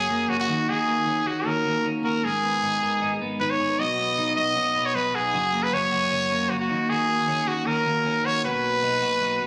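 A raspy, growling trumpet leads up front over twangy twelve-string electric guitar arpeggios with subtle chorus and a round, foam-muted fingered bass in the background, all playing from 0.0 to 9.5 s in this bright, breezy jangly indie pop cut from a longer piece at 155 BPM in B major, moving through D#m7, G#madd9, B and F# in a small room with light reverb, captured on a phone.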